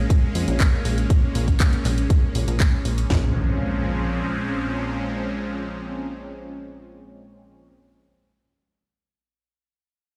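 A straight 4/4 house kit at 120 BPM, with a punchy kick, cracking snare and toms up front and quieter handclaps alongside warm hats pumping from the sidechain, drives this bittersweet progressive house cut in Bb minor, while a plucky, funky analog bass with tube saturation and ring-modulated bite pumps under a lush, bright, detuned supersaw pad that holds a Bbm7 chord through a phaser; the drums stop by 3.2 s as an electronic impact arrives in the background at 3.1 s, and the whole mix rings with stone room reverb, as if played on a big sound system in a bare room.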